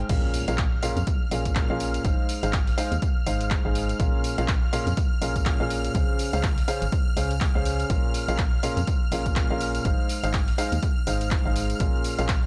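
An up-front baby grand piano with long sustain plays a filtered, tape-echoed riff through this energetic, bittersweet piano house excerpt, pumping against a punchy electronic kick and an analog drum machine's crash, handclaps, hi-hat and tambourine, while a hollow, dark, organ-like FM bass and a silky, nasal string pad with chorus and vibrato fill out the dry, gritty mix, and a very quiet impact sounds from 0.2 to 2.0 seconds.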